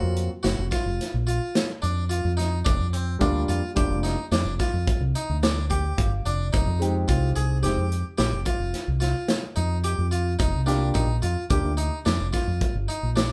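A dark, round fingered electric bass sits up front in this driving, brooding progressive instrumental, a short cut from a longer piece in 7/4 at 109 BPM with a straight feel in F dorian. An acoustic studio drum kit enters at 0.2 s with hi-hat, a medium-tuned snare and a punchy kick, sounding natural and close, as if in a small room. A bright, plucked French-style harpsichord spins arpeggios in a narrow middle range, while a grand piano with short sustain supplies accompaniment, steps forward with a fill at 5.4 s, and drops out at 11.7 s. The harmony moves through a rootless Daug over E#, Gm7 over F, Fm7 and Ebmaj7 over F. The band plays live in one room, framed by a moderate large studio reverb.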